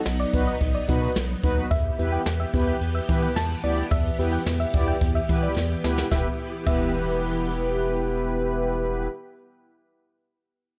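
A soft pluck and a shimmering string machine playing violin chords open this melancholic, nocturnal synth-pop piece, which is cut from a longer work. The pluck's gentle, wave-folded tone is carried on chorus and tape echo, while the vintage strings warble through phaser and ensemble chorus. A deep, round analog bass with a fast attack and a jazz brush drum kit arrive almost at once. The kit sits up front with dark cymbals, a medium-tuned snare and a boomy kick in a small acoustic room. Mellow synth brass, brassy and detuned with a sub octave and a filter sweep, also sits up front as accompaniment, while the harmony moves from B to Em. A drum fill at 5.6 seconds leads into a new section, the drums stop at 6.8 seconds, and light reverb keeps the space close and intimate.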